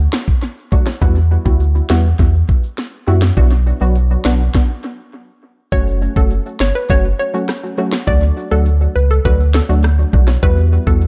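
Echo-heavy digital ambience wraps this bouncy, tough dancehall excerpt at 102 BPM, where a round sine sub bass and an up-front electronic kit with knocking kick, sharp snare and analog delay drive beneath close, dry timbales and tube shaker, while nasal, detuned chord stabs pump with sidechain and chorus from 0.7 seconds, a stop breaks the groove at 4.5 seconds, and a hollow square-wave pluck carries the melody from 5.7 seconds over chords moving from D through Emadd9 and Bm to F#m.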